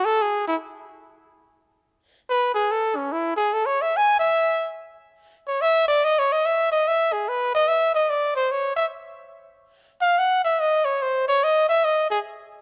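A clear trumpet opens the recording alone, playing an unaccompanied jazz solo that runs from the start to 12.2 seconds. The mood is cool and swinging, set at 144 BPM in 4/4 with a lilting swing on the eighth notes. The trumpet sits up front, ranging from C#4 to G#5 with a light vibrato, and its tone carries the soft grain of cassette tape. A moderate spring reverb surrounds the horn, giving the home-recorded sound a lingering tail. The short passage is cut from a longer piece.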